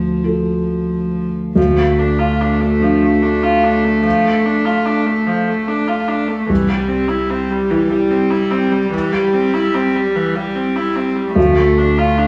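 A dark, intimate felt-muted upright piano with audible action noise and a floating, sul tasto bowed cello open this longing, melancholic neoclassical fragment in D minor, moving rubato at 49 BPM in 6/8 from Dm to C and back to Dm, with a rich, pure viola entering at 1.6 seconds, all three held up front in a wet stone room.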